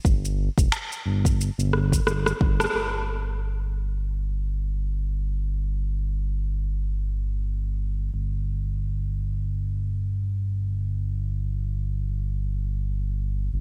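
A smooth, dark synth bass with a sawtooth edge and sustained portamento glides low and up front, pumping under sidechain as it carries this earthy, hypnotic organic downtempo passage in free time. A deep electronic kick and a tape-warm, layered kit of shaker, finger snaps, woodblock and rim click with slapback echo open the piece, ending in a drum fill and a band accent before dropping away by 2.7 seconds. From there the bass holds alone under light reverb until 13.6 seconds, in this cut from a longer piece.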